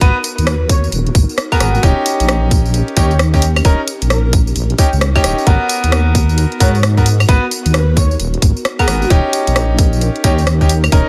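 UK garage in a two-step style, this moody, bouncy excerpt from a longer piece moves at 132 BPM in G# minor, its 16ths swung so the groove skips along. A tight, overdriven electronic kick joins the deep, wobbling bass, which sits up front with a dark, detuned sawtooth-and-sine tone carrying chorus and compression, while a layered, overdriven garage kit adds claves, hi-hat, rim click and tambourine. Brilliant grand piano stabs, intimate enough to reveal the noise of the action, ring through tape echo over a harmony that moves between G#m9 and D#7. Behind them, an airy pad holds mellow sustained chords that pump with sidechain, its tone carrying a noise layer and a moving notch. From 0.5 s to 10.4 s a soft, flute-like synth lead with vibrato and a sub octave drifts in the background through ensemble chorus and tape echo, all set in a digital ambience.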